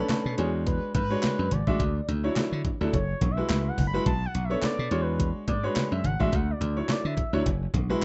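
A late-night, slick slice of early-eighties boogie funk with a swung sixteenth-note feel, cut from a longer piece, where a smooth, sawtooth-and-triangle synth lead with chorus and vibrato carries the melody over chords like E13, Dmaj9 and Bm9 until 7.3 seconds. A clear, boxy grand piano with short sustain sits up front alongside a bright, punchy slap bass, while a clean 12-bit drum machine with a thumpy kick, medium-tuned snare, hi-hat and handclaps drives the groove, and damped, low-tuned congas sit in the background. The whole carries light digital reverb and the rough, dark-topped sound of a home demo mix.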